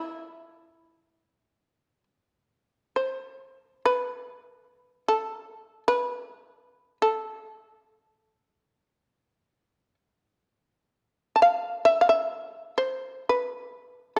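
In free time and an austere, calm mood, a solo shamisen plays the full 14.2-second excerpt of Japanese traditional chamber music in the E miyako bushi mode, its bright, buzzing, plectrum-plucked fretless tone sitting up front between E4 and A5 within a moderate recital-hall reverb, all carried on worn, warbling old cassette tape with a wavering pitch drift.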